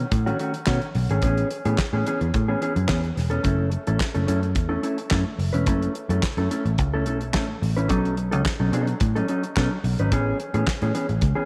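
Glamorous and danceable, this short disco excerpt cut from a longer piece moves with a straight 4/4 feel through rich ninth and seventh chords. A mellow, clean electric guitar, fingered and compressed with a touch of spring reverb, plays the accompaniment over a round, foam-muted picked bass with a dark, amped tone. A damped 70s drum kit, dry and up front with a fat snare, tight kick, hi-hat and handclaps, drives the groove in a lightly reverberant studio space.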